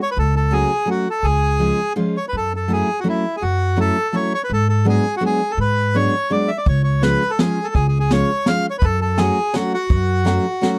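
A reedy, bright bandoneon carries the melody up front in this whirling, nostalgic musette waltz in F# minor at 167 BPM, a short cut from a longer piece. Beneath it, a full-bodied fingerpicked steel-string guitar with audible finger squeak and a woody, thumpy pizzicato upright bass on gut strings trace a progression from F#m through G#m7b5 and C# back to F#m. At 6.7 seconds a jazz brush kit joins with a high-tuned snare, boomy kick and hi-hat, its top rolled off, all captured in a dry, close 1970s-style studio sound.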